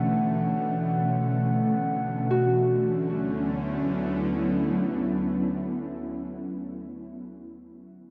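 A home cassette recording, soaked in a lush hall reverb, carries this short, free-time ambient fragment in D major, its mood peaceful and warm. Up front, an ethereal, airy pad of detuned sawtooth and triangle voices holds mellow, slow-attack chords with a long release, thickened by ensemble chorus. Beneath it, a string-like, tense drone sustains with vibrato and a noise layer. A bright, ringing Celtic harp, thumb-plucked, spins arpeggios through tape echo. A glassy, pure glass harmonica tone hangs with a beating quality until 2.3 s, when the harmony moves from A9 to D, and the harp rings on to 6.5 s as the last voice heard.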